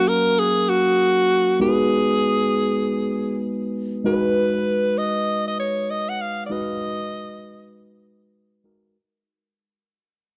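A dark, warm production sits in a moderate plate reverb, giving this short R&B excerpt a slick, bouncy feel at 98 BPM in 4/4 with a 16th-note swing, set in G# dorian. A bright alto saxophone carries the melody up front with a light vibrato and a digital delay, singing in a present pop style before dropping out at 7.7 seconds. Underneath, a mellow, clean tine electric piano comps over F#maj7 and G#m7 chords, and the whole piece fades out from 4.1 seconds to its close at 9.0 seconds.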